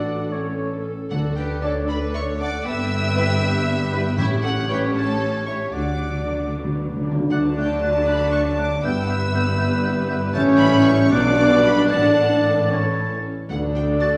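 Cheerful and graceful, this quick classical-period movement for symphony orchestra in a rubato 6/8 is cut from a longer piece. A rich, vibrato-laden violin section carries the melody, joined by a smooth second violin section, a pure straight-toned flute, a mellow oboe and a background clarinet. Lush, close violas supply the accompaniment, a very quiet horn section holds sustained chords, a soft-attacked trumpet section adds stabs, and focused cellos and even double basses anchor the bass, while hard-mallet timpani enter at 1.1 seconds with a fill from 5.7 to 7.3 seconds, all set in a wet scoring-stage reverb.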